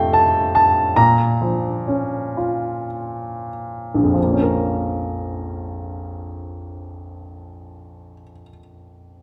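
Classical solo piano in a lyrical, rubato style, this short excerpt from a longer piece sits in B-flat minor and triple metre, its tempo drifting between 43 and 75 BPM. A clear baby grand piano carries everything alone across the full 9.2 seconds, ranging from Bb1 up to Bb5 with a polished, up-front presence. The opening phrase slows down over its first 4.2 seconds, moving from an F chord to B-flat minor at 1.0 seconds, before a second section begins. The instrument sounds tuned slightly under standard pitch, at A4 = 439 Hz. A reverberant recital hall surrounds the piano with a lingering 1.4-second decay, lending the wistful, melancholic mood a sense of space.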